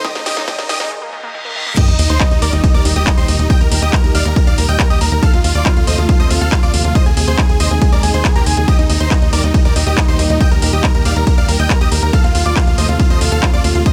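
A huge, euphoric supersaw lead carries the melody in this uplifting, soaring trance excerpt, with dub echo and sidechain pumping, over a punchy, up-front electronic kick and a techno kit of cracking snare, metallic hats, handclaps, ride and crash, both re-recorded in a small room. Behind it, a mellow plucky unison lead with cassette tape colour and digital delay plays a second line, and a thick, chorused pad holds sustained chords. A bright unison pluck arpeggiates through the build-up until 1.8 s, joined by a riser, reverse cymbal and sub drop from 0.1 s. Just after the drop at 1.8 s, a tight, driving sequencer bass enters at 1.9 s, pumping along with the leads and pad inside a digital ambience.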